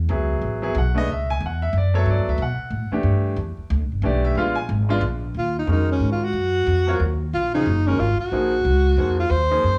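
Hypnotic and spiritual, this jazz waltz excerpt swings at 182 BPM in 3/4. A woody, pizzicato upright bass and a clear baby grand piano with long sustain and audible action noise carry the harmony up front through rich minor eleventh chords, settling into Eb dorian at 5.3 s. Just after, at 5.4 s, a breathy alto saxophone enters with a whispered, intimate solo full of vibrato and scooped notes, all wrapped in light reverb and small room ambience.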